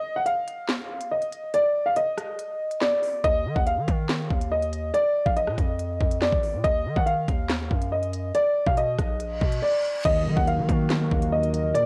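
A worn, boxy baby grand piano carries the melody up front from the start, its action noise audible through a low-pass filter and cassette tape, joined almost at once by a drill drum kit with a knocking kick, sharp snare, crisp hats, handclaps and rim clicks in a tense, dark half-time hip hop groove. A distorted, saturated 808-style bass arrives at 3.2 seconds as the chords move from Ebsus2 through Bb, Ebm and B, and a reverse cymbal leads into a brief silent gap before an impact lands at 10.0 seconds. There a mellow tine electric piano and a smooth, warbling analog pad with chorus join over Ebm in this short cut from a longer piece.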